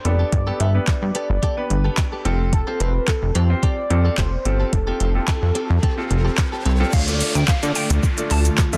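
A dense, heavily limited modern master with a dry sound opens this energetic, driving dance-pop cut, taken from a longer piece in a straight 4/4. A velvety, smooth synth lead carries the melody with chorus, tape echo and vibrato, over a warm grand piano with short sustain and a bright, twangy clean electric guitar riff recorded direct. Up front, a punchy, funky analog bass with a plucky filtered attack and a smooth electronic R&B kit with a soft kick, woody snare, metallic hats, handclaps, shaker and crash give the groove its weight, with sidechain pumping on the bass and piano. Electronic riser and downlifter effects come in at 4.8 seconds and build toward a drop at 6.9 seconds, where the harmony moves from Gadd9 and Fadd9 to Dm. Here a glassy, crystalline wavetable pluck takes over the melody in the background, joined by an ethereal, airy pad with ensemble chorus and its own reverb, and a very quiet, crisp group handclap.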